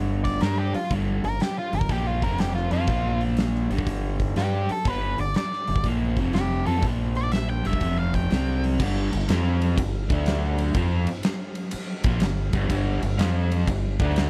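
Blues rock with a southern rock edge, this swaggering, driving power-trio excerpt rolls along on a swung 4/4 feel, with a crunchy, double-tracked overdriven guitar riff and a growling, punchy fingered bass pushed up front over G and F power-chord movement. A huge arena drum kit with a fat snare, punchy kick and bright cymbals fills out the sound, while a dark octave-fuzz lead guitar carries the melody from 0.2 to 8.6 seconds before the riff, bass and drums press on together into the next section at 8.8 seconds. The mix is dry, with little reverb.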